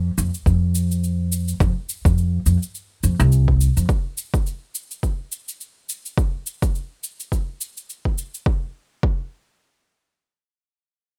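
This organic downtempo cut, taken from a longer piece, moves at 105 BPM in 4/4 with a light sixteenth-note swing and a warm, mystical mood. A woody, thumpy pizzicato upright bass on steel strings sits up front in the low register and drops out at 3.8 seconds. A layered, electronic cabasa and a punchy kick, both re-recorded in a small room, carry on afterward, the cabasa until 8.4 seconds and the kick until 9.2 seconds. The sound is dry and bright, with a 1980s-style digital sheen.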